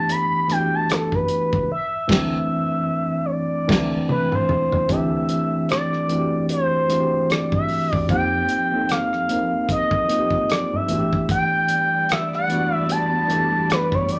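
Sensual and relaxed, this neo-soul R&B excerpt sways at 75 BPM with a swung sixteenth-note feel, led by a smooth, expressive sawtooth synth lead with chorus, vibrato and a filter sweep, over a worn, slightly out-of-tune tine electric piano voicing suspended chords. A soul drum kit with dark cymbals and a tight kick sits up front in a small room and plays a fill as the band accents the opening phrase, while a round, foam-muted fingered bass enters at 0.9 seconds deep in the background. At 11.3 seconds a shimmering vintage string machine adds bright, slow-blooming violin chords, and a wet club reverb gives the mix a glossy sheen.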